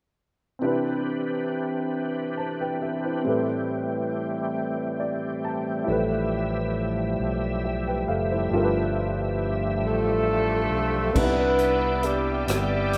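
Jubilant and hopeful, this slow gospel passage in a straight 6/8, cut from a longer piece, opens with a woody, slightly detuned vintage upright piano and an up-front, reedy tonewheel organ with key click, fast rotary speaker and chorus vibrato, moving through lush extended chords while the piano adds a fill before a warm, amped fingered electric bass enters at 5.9 seconds. At 9.8 seconds a clear, loosely played jazz-style horn section with light vibrato takes the melody, joined a moment later by a breathy, whispered tenor saxophone with scooped notes, both carrying a slapback echo. A swinging big-band drum kit with a boomy kick, hi-hat, rim click and crash cymbal arrives at 11.2 seconds, all set in a wet plate reverb with a rough home-demo feel.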